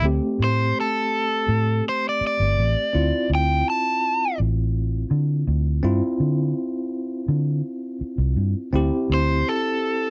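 A straight-eighth 4/4 pulse at 83 BPM carries this brooding, soulful soul-blues fragment, where a clean, bell-like tine electric piano holds the Am7 and Dm7 harmony throughout, a dark, round, foam-muted fingered bass punches up front until 9.4 seconds, and a bright, overdriven, compressed electric guitar plays a picked melody until 4.4 seconds before returning at 9.1 seconds, in a dry, close 1970s-style studio sound.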